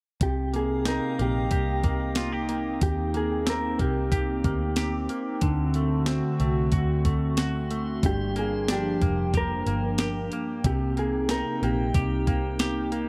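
Bathed in a moderate plate reverb, this haunting, ethereal dream pop passage sets a dark, clean fingered electric guitar melody with tape echo over a hollow, flute-like soft pad with chorus, bright picked semi-hollow guitar arpeggios touched with subtle chorus and tape echo, a round, foam-muted vintage bass, and an up-front, thumpy 12-bit drum machine playing kick, snare and hi-hat, while a glassy texture of drifting overtones glimmers in the background from 0.7 s and again from 7.8 s.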